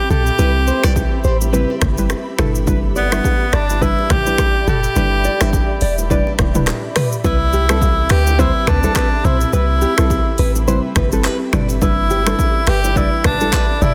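A breathy tenor saxophone and an ethereal, airy pad open this joyful, romantic afrobeats excerpt at 105 BPM, with a swung sixteenth-note feel over a Cmaj7 to G6 progression. The saxophone sits up front with a whispered, intimate pop tone, vibrato and scooped notes, trailed by delay, while the pad hangs in the background with a slow attack, ensemble chorus, a long release and mellow built-in reverb. At 0.1 seconds a thumb-plucked nylon-string guitar riff with audible finger squeak enters, along with a deep, boomy, clean 808-style bass and a punchy, layered deep house drum kit of kick, hi-hat, rim click, finger snaps, handclaps, shaker and toms, its snare softly clipped. A soft, round, dark pluck with chorus and a filter sweep joins at 0.4 seconds, as do very quiet congas and bongos played with soft hands, sounding distant in a large room. The whole piece carries a dense, heavily limited modern master and a digital ambience, and it is cut from a longer piece.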